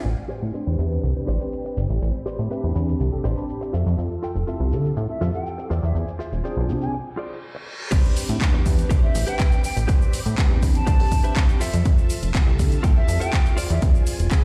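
Driven by a straight 4/4 house groove at 122 BPM in A minor, this funky, sensual stretch of filtered disco house rides a plucky, up-front analog bass with tube saturation, bright-hatted overdriven house drums with handclaps and shaker, a clean picked guitar riff carrying 12-bit sampler grit, a tine electric piano, and a swirling phased string machine in the background, all pumping under the filter sweep of the opening section. An airy, hollow concert flute carries the melody from 5.1 seconds with vibrato and dub echo, a short break and an electronic reverse cymbal lead into the drop at 7.9 seconds, where a punchy overdriven electronic kick enters, and the guitar adds a fill around 11.1 seconds. The chords move from Am11 through Fmaj7 to E7b9b13, and the whole mix sounds as if played on a big sound system in a bare stone room.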